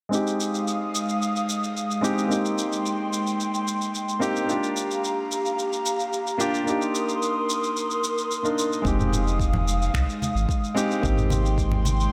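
This smooth, wistful sunset chillout piece, cut from a longer work, opens with a grand piano up front, its chords passing through a low-pass filter sweep and a digital delay. An airy, breathy pad with a detuned, chorused shimmer sustains chords alongside it over a steady straight feel. A layered electronic deep house kit of finger snaps, shaker and toms sits further back, re-recorded in a small room. At 8.8 seconds a round, sine-like sub bass arrives with tube saturation, alongside a deep, layered electronic kick. Bright, compressed congas played with hard hands join in the background at 9.5 seconds, while a lush hall reverb gives the mellow harmony of Fm7, Abmaj7, Gm7 and Cm7 a warm, spacious glow.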